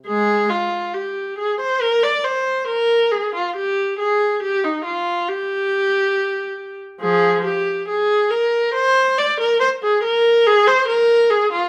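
A classical, baroque-style suite movement for unaccompanied viola, this short excerpt from a longer piece moves at an introspective, flowing 69 BPM in 4/4 with a rubato feel. A single bowed viola plays throughout from 0.1 to 11.7 seconds, ranging from F3 to D5 with a rich, focused tone and vibrato, sitting up front yet with a distant quality. A stone room reverb with a 1.0-second decay surrounds the instrument.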